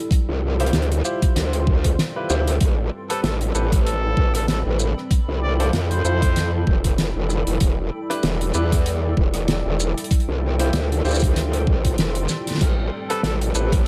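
A swung sixteenth-note glitch hop groove in 4/4 rides on an overdriven, knocking electronic kick up front and a soft-mallet acoustic kit with a fat snare, dark cymbals, hi-hat, rim click and shaker, with a short drum fill at 12.3 seconds, setting a funky, playful mood. An aggressive, wobbling, distorted growl bass sits up front beneath present grand piano stabs with tape echo and sidechain pumping, while a moody, detuned analog pad with phaser and 12-bit grit and a blurred, evolving granular cloud pad hover in the background over chords moving from Dm11 through Am9, Fmaj7 and Em7. A clear, classical-style solo trumpet with sampler grit and tape echo carries the melody from 3.1 seconds and returns briefly at 13.1 seconds, the whole excerpt set in a small room ambience.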